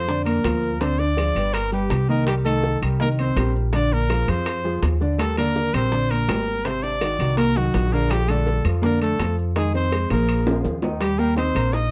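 A bright trumpet with vibrato and slapback echo carries the melody from the first moment over a dark, clean, picked hollow-body electric guitar second line, short-sustain baby grand piano accompaniment and a woody, thumpy pizzicato upright bass up front, while tight high-tuned bongos, ringing metal-shell timbales and grainy maracas sit in the background of this sophisticated, danceable Afro-Cuban jazz excerpt at 165 BPM in Bb major, captured dry and close in a 1970s-style studio, with a drum fill arriving at 10.1 seconds.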